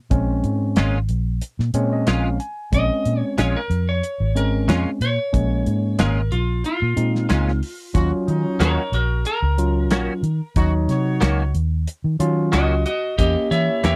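A dry, close 1970s-style studio sound frames this brooding, smoky soul blues cut from a longer piece, with a straight-eighth feel. A barky, gritty overdriven tine electric piano sits up front with a fill at 1.4 seconds, over a dark, round, foam-muted bass and a tight, damped drum kit, while a bright, twangy clean guitar adds compressed stabs with ensemble chorus. A fingerpicked lap steel enters with a slide second line at 2.7 seconds, and a tight, jazz-style horn section joins with sustained chords at 7.9 seconds.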